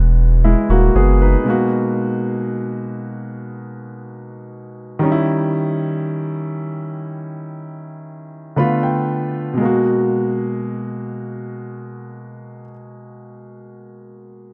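Longing and late-night in feel, this R&B fragment, cut from a longer piece, rests on a clear concert grand piano that carries the accompaniment throughout, its natural tone reaching into a deep low end. A thick, saturated sub bass sits up front for only the opening 1.4 seconds. The piano then moves through minor-ninth and altered dominant chords, with a fill from 8.1 to 9.6 seconds before returning to the home chord, all set in a dark production with light reverb and the ambience of a small room.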